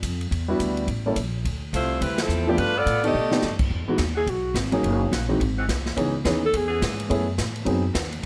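Upright bass and a swinging big-band drum kit open this energetic, joyful slice of fast big band swing cut from a longer piece: the pizzicato bass sounds woody and growly, while the airy, polished kit brings a punchy kick, medium-tuned snare, hi-hat, ride and crash. A grand piano joins almost at once with warm accompaniment, its intimate, natural sound carrying audible action noise. At 1.7 seconds a bright, close-miked saxophone section takes the melody up front, punctuated by a band accent and then a drum fill at 3.1 seconds. The alto saxophone solo begins, and from 4.2 seconds a breathy, whispered alto plays a subtone line with vibrato, soft attacks and scooped notes. Behind it, a dark, vintage-tinged saxophone section holds sustained chords with light vibrato, all under a light reverb and rich, shifting jazz harmony.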